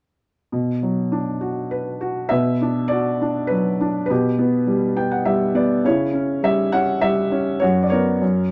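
A dark, intimate studio sound with moderate room ambience places a felt-muted upright piano up front, its thin-felt tone soft and short in sustain. This brooding, cool classical fragment, cut from a longer piece, is a lyrical solo piano piece in a rubato 3/4. The piano moves from Bm through Em9/B and C#dim to a closing F#sus4, shifting into a new section at 2.3 seconds and adding a brief fill between 4.7 and 5.8 seconds.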